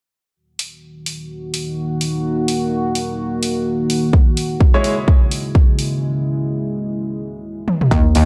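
A dark, lightly reverberant digital mix opens this bouncy, aggressive bass house excerpt at 127 BPM in Eb phrygian, swung on the sixteenths, as a house kit of hi-hat and toms sets up in a small room and a deep, moody sawtooth pad with chorus and sidechain pumping holds sustained Ebm chords. A punchy electronic kick arrives at 4.1 s as the harmony moves to Dbm, and a clear, intimate baby grand piano adds a brief delayed stab with audible action noise. After a break and a drum fill, a metallic, saturated FM wobble bass bursts in on Eb2 at 7.9 s just as the excerpt cuts off.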